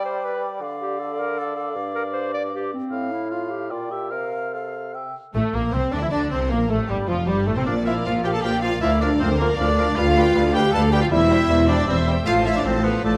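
Bowed violins with smooth, even vibrato carry the melody from the background of this cheerful, spirited classical-period movement for symphony orchestra, quick at 156 BPM in 3/4 with a rubato feel, while a second violin line joins them. For the first 5.3 seconds the woodwinds play alone: a mellow, distant cor anglais, an airy, hollow flute and a clarinet share the second line over a roomy bassoon accompaniment. At 5.3 seconds the strings and French horn section enter, with warm, focused cellos and intense double basses on the bass and sustained horn chords, joined a moment later by a very quiet viola section, before the music settles into C major at 10.0 seconds, all in the moderate reverb of a scoring stage.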